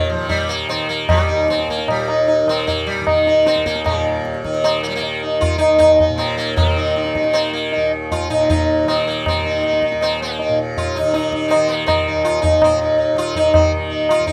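Hindustani classical music in an uneven seven-beat cycle, meditative and radiant, cut from a longer piece, with a pace that quickens steadily throughout. Up front, a plectrum-plucked sitar carries the melody with a buzzing, shimmering tone and resonant sympathetic strings, over a softly plucked, warm tanpura drone, while close, high-tuned tabla joins at 0.3 s. A new section begins at 3.9 s, and the whole piece has the feel of a rough home demo with audible studio ambience.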